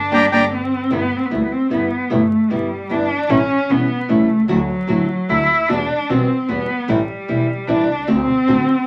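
A bowed cello, full of vibrato and portamento, carries this melancholic, tense tango fragment. Its expressive, smooth-topped tone sits up front and takes a solo from 0.9 seconds. The piece moves in a rubato 3/4 at 151 BPM in G major. It opens with a brief band accent, where a reedy bandoneon flashes a high phrase from 0.1 to 0.5 seconds. Beneath the cello, a small, fingerpicked nylon-string guitar provides close, intimate accompaniment, and a bowed double bass adds a clear, intense line with its own vibrato from a distance. The harmony drifts from G minor through G6, A7 and Dadd9 toward Am7 and D7, all set in a damp studio ambience with a layer of vinyl crackle.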